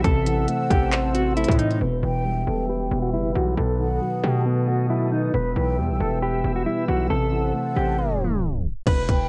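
A worn, warbling cassette sound with drifting pitch and a dry, close feel colours this melancholic yet hard-hitting trap cut, taken from a longer piece and moving at 136 BPM in a half-time 4/4 feel in E harmonic minor. A saturated, aggressive 808-style bass sits up front with heavy distortion, while a dark, clean electric guitar carries the fingered melody through tremolo and a low-pass filter. Soft, round electric-piano-like synth keys fill in the chords with chorus, and a sawtooth-based resonant pad adds evolving, full-bodied sustained harmony high above, over a progression that moves from Am to Em, B7, Em and back to Am. A breathy, hollow concert flute plays a close-miked second line with tape echo. The electronic trap kit, with its hard-clipped kick, crisp hats, handclaps and crash, punches through the opening until 1.8 s, when a filter sweep takes over the rest of the passage, and a tape stop at 8.0 s drags the sound down before the drums return briefly at 8.9 s.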